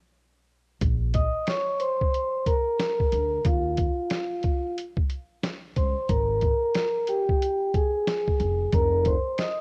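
A faint mains hum and the air of a small room open this cool, nocturnal jazz-hop fragment, cut from a longer piece, before the band enters at 0.8 seconds. A pitched-down, sampler-style drum kit sets a 91 BPM groove in 4/4 with a 63% swing on the 16ths, its thumpy kick, medium-tuned snare and hi-hat sitting compressed and muffled up front under a cassette-tape coloring. Alongside it, a woody pizzicato upright bass with steel strings moves through the low register in Bb dorian. From 1.1 seconds a soft-mallet vibraphone, played with the motor off, carries the lead, its mellow, ringing metallic tone placed up front and also tinted by cassette tape. The harmony drifts from Bbmadd9 through Ebsus2 and Absus2 to F7sus4, and the bass stops at 9.1 seconds while drums and vibraphone run to 9.6, giving the whole thing the intimate, slightly worn feel of a home cassette recording.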